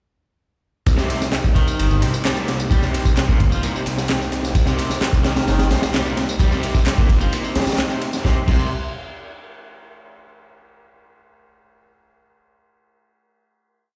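At 0.9 s an energetic, raw breakbeat drop in C minor at 130 BPM arrives: a crunchy, gritty looped break with a punchy kick, high-tuned snare and dark cymbals sits up front, topped by an electronic house layer of handclaps, tambourine and ride, while a swirling, thick phased saw bass carries a dub-style line, a bright, overdriven garage guitar riff with tube saturation and delay repeats from 1.0 s, and a mellow, round tonewheel organ holds sustained chords in the background through a slow rotary speaker, 12-bit sampler grit and sidechain pumping, the whole heard in a bare stone-reverb room before a final chord rings from 8.2 s.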